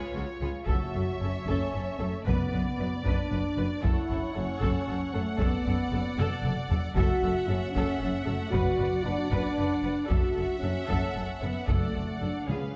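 Epic orchestral film score in F# minor at 76 BPM in 6/8, dark and relentless, where a distant, lush violin section carries the melody over a second, more intense violin line, smooth violas fill the middle, mellow French horns sit up front with sustained chords, focused cellos and double basses hold the low end in the background, and from 0.7 s a taiko ensemble struck with heavy sticks drives the rhythm alongside hard-mallet timpani, with a drum fill at 6.2 s and another drum and timpani fill at 12.5 s, all set in a moderate concert hall.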